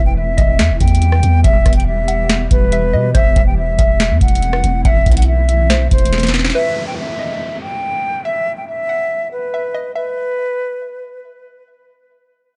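Dark and brooding, this half-time trap excerpt sets an airy, vibrato-laden concert flute with delay up front over a hollow, detuned square pluck in the background, a cloudy granular pad, a deep sine 808 bass and a booming analog drum machine with crisp snare and metallic hats that drops out after a fill at 6.1 seconds, leaving a downlifter and the two lead lines in a dark, dry mix.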